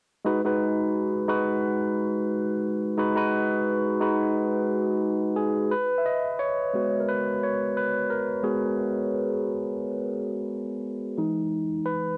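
Cassette-recorded at home with light reverb and digital ambience, this bittersweet, smooth soul fragment at 88 BPM in G# minor (tuned to A4 = 445 Hz) features a barky tine electric piano, lightly overdriven through a combo amp with phaser and placed up front, which moves from G#m7 into a solo at 5.7 seconds before settling on Emaj7 at 11.2 seconds.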